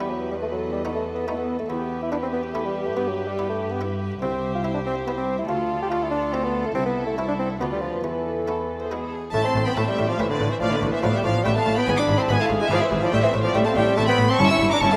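Driving and stormy, this baroque-style concerto movement in 3/4 at 142 BPM moves from E minor into A minor around 4.2 seconds, with a mellow, close-miked solo bassoon up front carrying the melody over two rich chamber violin sections, one playing its own expressive melody and the other a second line, a smooth studio viola section and cello section in support, a muted, lute-like buff-stop harpsichord in the background, and a chamber double bass section joining the bass at 9.3 seconds, all set in a moderate concert hall reverb.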